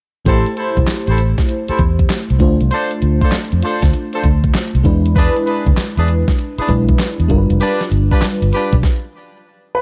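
New jack swing R&B at 98 BPM in A minor, confident and slick, built on a swung groove from a 12-bit drum machine with thumpy kick, fat snare, hi-hat and handclaps, under a round, punchy foam-muted fingered bass moving through Am7, Dm7, E7 and G7. A lush, detuned FM electric piano with a soft pad layer adds chorus and tremolo to the accompaniment, while a mellow horn section with light vibrato punctuates it with loose, jazz-style stabs carrying tube saturation and tape echo. The band stops at 8.8 seconds, leaving a single up-front B4 from a smooth grand piano at 9.7 seconds in this dry, dark production.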